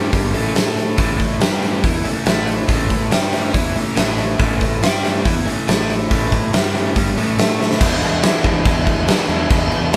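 Indie rock with a jangly, wistful mood, cut from a longer piece and played in a straight 4/4 by a band recorded live in one room with moderate studio reverb. Two overdriven, picked electric guitars carry the riff: the compressed first part runs throughout, while a second guitar sits in the background and drops out at 7.6 seconds. A fuzzy, overdriven fingered electric bass gives a punchy low end beneath them. A big acoustic rock drum kit sits up front with a fat snare, punchy kick, hi-hat and crash cymbal, its sound carrying the ring of a bright stone room. A drum fill at 7.6 seconds leads into a new section at 7.8 seconds, where the harmony moves from A to E7.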